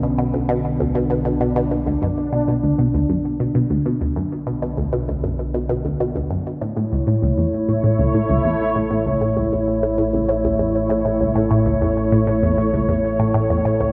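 A straight 4/4 pulse at 98 BPM drives this luminous, cosmic piece of sequencer-driven space music, tuned to A4 = 442 Hz and cut from a longer work. Up front, a squelchy, juicy blip pluck repeats a low riff between C#2 and B2, its detuned sawtooth and triangle tones colored by ring modulation and a snappy resonant filter, then treated with phaser and delay. Also up front, a sweeping pad holds sustained chords from D3 to C#5, its evolving, detuned sawtooth-and-sine voice opening through a slow filter swell and a long release, thickened by chorus. Beneath them, a fat analog bass sustains a B1 with a thick sawtooth and square-wave tone and a moving notch. The harmony rests on Bmadd9 before shifting to A at 6.6 seconds, all within a single section lasting until 13.9 seconds. A moderate plate reverb with a 3.1-second tail and an echo-heavy mix give the recording its spacious, drifting atmosphere.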